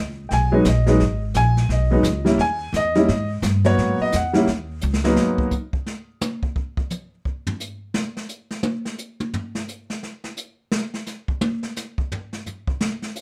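Jazz piano trio swinging at 173 BPM with a cool feel, cut from a longer piece and set in light reverb. An intimate upright piano with audible action noise takes a solo over woody pizzicato upright bass through Emaj7, D#(b9) and G#m9 harmony, while a roomy, boomy brush kit plays a fill from 4.8 seconds. The bass drops away at 5.2 seconds and the piano by 5.5 seconds, and from 5.2 seconds the distant, rolled-off drums carry a solo on brushed snare, hi-hat, kick and toms until 13.2 seconds.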